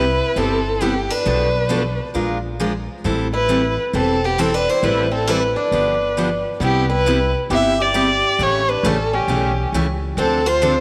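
Acoustic string swing in the jazz manouche tradition, this swinging, virtuosic fragment of a longer piece moves at 135 BPM in 4/4 with a 65% swing on the eighth notes, starting in A minor before shifting to C major at 6.6 s. A single bowed violin carries the melody up front and close, its soft attack, vibrato and portamento giving the line an expressive, warm voice. Beneath it, a boxy, bright swing-style guitar picks a second line, while a full-bodied jumbo steel-string guitar sits up front with the picked accompaniment, a touch of finger squeak audible on its strings. A woody, dark upright bass with gut strings supplies a thumpy pizzicato foundation. The harmony runs through Cmaj7, Bm7b5, Bb7 and Am7 to G7 in the first section, then Cmaj7, A7 and Dm7 in the second, all bathed in a moderate plate reverb.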